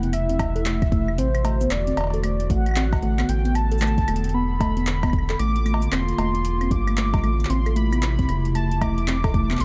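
A cerebral, glitchy IDM passage opens at once with a velvety, detuned synth lead carrying the melody over a warbling, nostalgic pad that holds sustained chords through chorus and its own reverb, all in A dorian at 114 BPM with a 62% swing on the sixteenths. A mellow tine electric piano plays arpeggios through vintage 12-bit sampler grit and digital delay, while the lead adds chorus and tape echo to its smooth, full-bodied tone. Underneath, a rubbery, nasal square bass with a resonant filter pluck sits up front, the loudest part alongside an electronic kick that enters at 0.4 seconds with a deep, room-recorded thud. An overdriven analog drum machine adds claves, cowbell, handclaps, metallic hi-hats and shaker at a low level. The chords move from Am to D, Bm7 and Bb before returning to Am, and the dark, dry production gives this short cut from a longer piece an intimate, hazy character.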